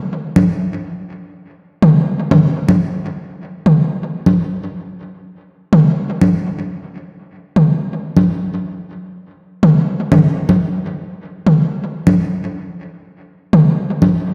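Drenched in a lush hall reverb and heard as if through a big sound system in a bare room, this cavernous, deep techno excerpt at 123 BPM in a straight 4/4 features up-front, layered electronic congas and toms, produced with dub echo trailing them from 0.4 to 14.1 seconds.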